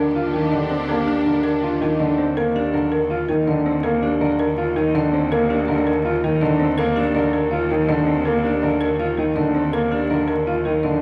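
A propulsive, bright stretch of minimalist pattern music in Eb major at 163 BPM opens on an Ebmaj9 chord, with a woody, dry folk marimba carrying the melody over a dark, up-front baby grand piano accompaniment, clean fingered electric guitar arpeggios and a clear bowed cello holding a low Eb bass. A pure alto flute with vibrato adds a second line in the background and a lush symphonic string section sustains chords, but both drop out at 2.1 s, leaving the marimba, piano, guitar and cello to drive on. The sound sits in a wet recital hall reverb with a layer of vinyl crackle.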